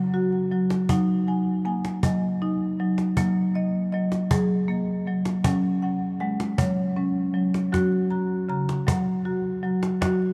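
Dreamy and calm, this meditative world fragment in 6/8 at 53 BPM, in F# major pentatonic, sets an up-front marimba with medium mallets on rosewood bars playing delayed arpeggios over F#, D#m/F# and C#5/F# harmonies, joined at 0.3 seconds by a quieter, band-limited cajon with faint snares and hard hands, all bathed in a long, wet cathedral reverb.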